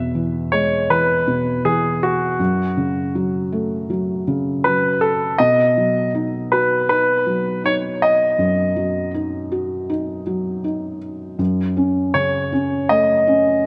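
Emotional and heartfelt, this pop piece moves at an unhurried 80 BPM in a straight 4/4, cut from a longer work. A clear concert grand piano carries the melody between F#4 and D#5, its tone polished and present with a short sustain, sitting up front and slightly louder than its partner. Beneath it, a felt-muted upright piano plays the accompaniment from E2 to F#4, its sound soft, dark and intimate, thick with felt yet close and natural. Both instruments play throughout, resting in a moderate, lush hall reverb that lends the pair a gentle bloom. The harmony travels from E through F#m to B, then turns back to F#m at 11.4 seconds as a new section begins.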